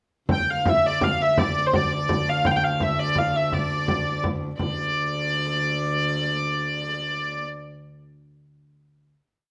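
A live trio rings out in a stone room with a moderate wash of reverb, playing a short, complete medieval dance in D minor with a mysterious, ancient mood, at 113 BPM in a straight 6/8 and tuned to A4 = 441 Hz. Up front, a reedy, smooth-topped hurdy-gurdy carries an ornamented modal melody, while a viola da gamba holds a low D drone with gut-string tone, an airy bow and light vibrato. A close frame drum played with soft hands keeps an evenly spread pattern until 4.8 s, and the hurdy-gurdy and gamba carry on into a held final note from 4.6 s.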